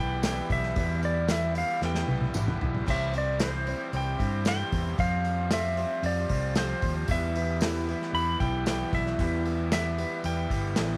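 A light reverb and small-room ambience frame this dusty, wistful slice of folk rock and heartland rock, cut from a longer piece and moving at 114 BPM in a straight 4/4. Up front, an acoustic drum kit played with bundle sticks sounds airy and polished, with a punchy kick and medium-tuned snare, while a round, dark fingered electric bass anchors the low end and a jingly tambourine sits in the background. A clean, compressed lap steel carries the melody with a dark slide tone, over a double-tracked, overdriven garage guitar riff with a bright, raw edge. Filling in the accompaniment are a shimmering, octave-doubled twelve-string acoustic guitar set back in the mix, a very quiet concert grand piano with deep bass and short sustain, and a reedy, vintage accordion holding sweet, sustained chords. The harmony moves from Em to C to Fsus2 and back to Em, with a drum fill between 1.8 and 2.9 seconds.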